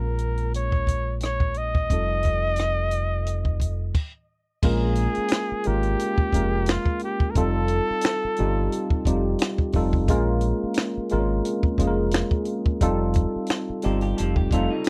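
Soulful and smooth, this neo-soul R&B excerpt moves at 88 BPM in Bb dorian with a light sixteenth-note swing, cycling between Bbm7 and F9 in a dry, close 1970s-style studio sound. A warm flugelhorn carries the melody with vibrato and scooped notes in a jazz style until 9.4 seconds, over a worn, slightly out-of-tune tine electric piano with analog chorus, a deep, round, punchy fingered electric bass, and a compact cocktail kit with a punchy kick, high-tuned snare, dark cymbals, rim clicks and finger snaps. After a brief stop at 3.9 seconds, the groove resumes, and at 13.8 seconds a twangy, slightly broken-up guitar through a small old amp adds a picked second line with spring reverb.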